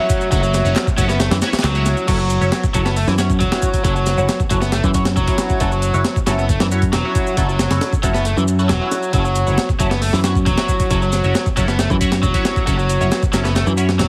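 Breakbeat at 136 BPM in F# minor pentatonic, funky and swaggering, opening on a drop where a moody, detuned analog pad with chorus, phaser and sidechain pumping sustains an F#m7 chord until 2.1 seconds, while a bright, overdriven electric guitar riff with tube saturation and dub echo, nasal band-passed chord stabs carrying 12-bit sampler grit, a pitched-up sampler-style breakbeat kit with a thumpy kick and small-room reverb, background electronic shaker and handclaps, and a round, up-front picked electric bass entering at 0.3 seconds carry the rest, the mix squeezed into a heavily compressed radio sound with vinyl crackle and digital ambience.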